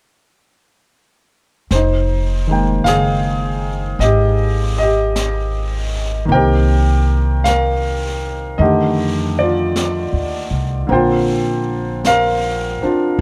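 The sound is close and detailed, with little reverb, so every part sits near the listener in an intimate, dry space. This is a wistful jazz ballad in a slow, swung 4/4, cut from a longer piece. A clear concert grand piano carries the accompaniment, its audible action noise and deep low end placed up front. An upright bass with steel strings is plucked pizzicato, giving a woody bottom that also sits forward. A brushed drum kit plays softly underneath on a high-tuned snare and hi-hat, with a natural studio-room character. All three parts play together from 1.7 to 13.2 seconds, moving through Fm11, Cm7, F13 and Bb69.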